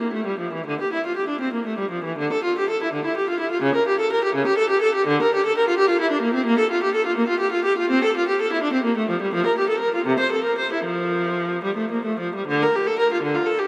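A single bowed viola opens this brief, flowing fragment of a baroque-style suite movement, played unaccompanied in 6/8 with free, rubato timing. The tone is rich and smooth, shaded with vibrato, and the one player sits up front, keeping an even line that spans the range from C3 to C5. Partway through, at 6.5 seconds, the music shifts from a darker minor colour into a brighter major, while the mood stays introspective. A huge, wet reverb surrounds the viola, so each phrase rings on into a vast, echoing space. Cut from a longer piece, the passage stops at 13.7 seconds.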